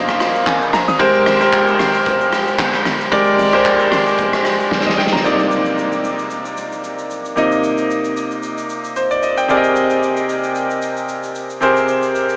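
A brilliant, up-front grand piano and a hollow, bouncy log drum bass open this hypnotic, late-night amapiano piece, with a gritty, saturated garage drum kit of handclaps, hi-hat, punchy kick, rim click, shaker and snare arriving a moment later; the log drum drops out after a drum fill that ends at 5.2 seconds, leaving the polished piano's rich chords and the dark, rolled-off drums floating in a dreamy, reverb-soaked mix with an AM radio tint.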